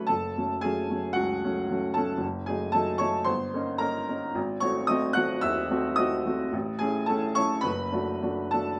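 An upright piano opens the recording alone, its tone clear, woody and open, set up front in a moderate studio reverb. This is a romantic character piece for solo piano, stormy and brooding in mood, moving at about 112 BPM in 4/4 with uneven beats and a free, rubato feel. The part spans from F#1 up to F#6, drawing on the instrument's deep low register as well as its high treble. The harmony begins on F#m, darkens through diminished and dominant seventh colours to G#7b9, then turns toward A and closes on D/F#. Cut from a longer piece, the passage lasts 8.8 seconds, and the piano plays throughout.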